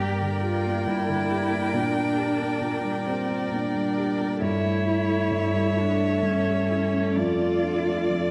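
Elegiac and yearning, this slow romantic movement for piano quintet moves in a rubato 3/4 at roughly 64-70 BPM, its harmony passing from G minor toward a closing D minor chord in a short cut from a longer piece. A rich, focused violin with vibrato carries the melody above a second violin and a woody, dark cello, while a distant viola with portamento and soft attacks joins a mellow, intimate grand piano up front, its action noise audible, in the accompaniment. All five players sound from 0.0 to 8.3 seconds within a dark production and a wet scoring-stage reverb.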